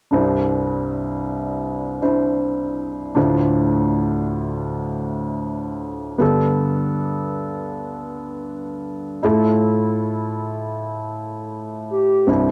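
An intimate upright piano with audible action noise carries this hopeful, emotional pop ballad at 79 BPM in C major, tuned to A4 = 436 Hz, moving through Cadd9, Dm7, Gadd9 and Fmaj7/A with a woody, cassette-tinged tone in a small, lightly reverberant room. At 11.9 seconds a hollow, clarinet-like synth lead with chorus and vibrato enters up front on a soft, sustained G4 just before this home-recorded excerpt cuts off.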